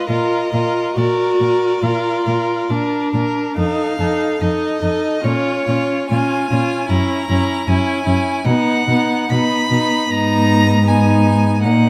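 In a rubato 4/4 at about 67-79 BPM, this slow, solemn and elegiac romantic movement for string quartet sets a rich, distant first violin on the bowed melody, smooth and even with vibrato, above a second violin carrying a second line. A smooth-topped viola fills in the accompaniment, and from 0.1 seconds an up-front cello holds the bass with soft attacks, expressive portamento and a warm vibrato. Chords such as Bb, F7, Bbm and Gb7 move through a moderate scoring-stage reverb in this passage cut from a longer piece.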